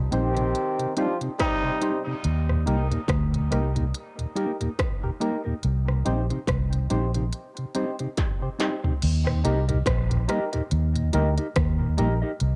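A hazy cassette home recording with light digital ambience opens this spacious dub reggae cut from a longer piece, moving at 71 BPM in Eb major with a swung sixteenth feel over Cm and Eb chords. Up front, a dark, round, foam-muted electric bass and an electronic drum kit with a heavy kick, clanging snare and crisp hats carry the groove, while a punchy trombone section blares briefly at the start and drops out by 2.0 s. A clean, fingered electric guitar and hollow, fast-attack, decaying organ stabs drift through dub echo. A soft, flute-like tonewheel organ with chorus vibrato and a slow rotary speaker sits in the background, and a drum fill at 8.2 s leads into a new section at 9.0 s.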